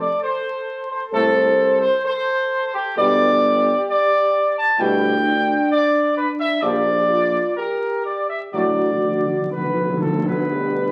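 Majestic and solemn, this brief classical ceremonial fanfare in 4/4 comes through the crackle of a very old 78 rpm record, set in a moderately reverberant large studio. A mellow trumpet section carries the melody up front with light vibrato, over sustained chords from a warm French horn section and a clear trombone section that joins at 1.1 seconds, while a present tuba with vibrato anchors the bass. Timpani struck with hard mallets, close and dry, add an articulate fill from 8.5 seconds as the harmony arrives on D.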